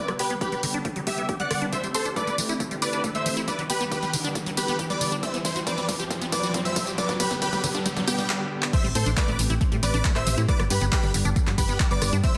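A dense, heavily limited modern master places this euphoric, uplifting trance passage in a moderate digital room, cut from a longer piece in straight 4/4. A huge, detuned supersaw carries the melody with tape echo and a low-pass filter. Above it, a catchy, bright plucky unison lead sits in the background with vibrato and dub echo. A lush, airy pad holds sustained chords through chorus and phaser, while a squelchy, resonant acid bass runs arpeggios. All four of these parts pump against the sidechain. A punchy analog drum machine, with crash, handclaps, hi-hat, rim click and tambourine, and an overdriven electronic kick, both dry, drive the build-up, with fills and a background riser that ends at 8.3 seconds. The drop lands at 8.7 seconds, and at 8.8 seconds a round, dark FM bass arrives up front with tube saturation, over chords that move between G, Am7 and C.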